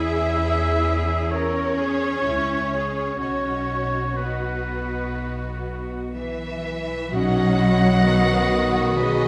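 A rich, focused symphonic violin section carries the melody in this short, moving excerpt from a cinematic film score, played rubato at around 58-68 BPM in B major. A solo oboe with light vibrato sings a second line alongside lush bowed strings, where a distant studio violin section adds expressive portamento in the background and a smooth, even viola section fills in the accompaniment. Cellos with a smooth top and an intense, clear double bass section anchor the low end, the harmony moving from C#m/E to B at 3.2 s. A pure, crisp-edged concert flute enters at 6.1 s with a straight tone, and at 7.1 s a background clarinet joins alongside a dark, very quiet tam-tam as the band marks an accent. A distant, roomy French horn section arrives just before the close with sustained chords, the whole orchestra heard from further back in a reverberant scoring stage that gives the uplifting mood a spacious glow.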